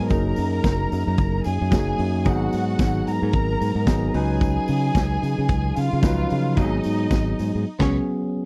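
Joyful, danceable disco at 111 BPM in F# major, where a punchy, growly fingered electric bass sits up front under a vintage drum kit with dark cymbals, a bell-like tine electric piano comping through F#69, G#m7 and C#9sus4, a lush bowed violin section carrying a smooth second line, and a jingly tambourine in the background, all captured in a dry, close 1970s-style studio sound that ends on a band accent at 7.7 seconds.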